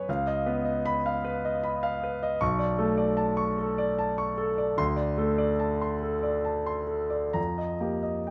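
Impressionist classical solo piano in a serene, hazy mood, this brief passage from a longer piece drifts at 42-52 BPM in a rubato 6/8, with a warm concert grand ranging from B1 to C#6, its deep bass and natural, up-front tone captured by close, detailed microphones in light reverb as the harmony glides through C#9, Bm9, D5 and F9sus4 over about 8.3 seconds.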